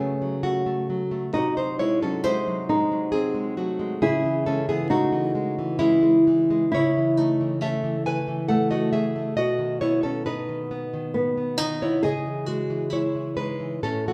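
Romantic guitar duo at a rubato 68 BPM in 3/4 and C# minor, where a tender flamenco guitar carries the thumb-plucked melody over an up-front, fingerpicked nylon-string guitar accompaniment, with audible finger squeak from both and a lingering recital-hall reverb around this short cut from a longer piece.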